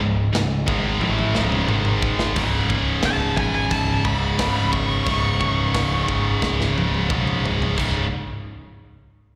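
A straight 4/4 pulse drives this dark, heavy metal passage, cut from a longer piece, where a scooped, high-gain rhythm guitar sits up front beside two tight, bright distorted guitars with slapback echo, one of them double-tracked in the background and dropping out at 2.4 seconds, all riffing low over C#m, G#5 and C#5 chords. A growling, overdriven picked bass pushes forward, while a mid-forward metal kit with a tight kick, medium-tuned snare, china cymbal and rolled-off top joins at 0.3 seconds and throws in two drum fills. At 3.1 seconds a high-gain lead guitar with echo and delay cuts in with a high melody, the whole performance heard live through a venue's PA in a recital-hall space.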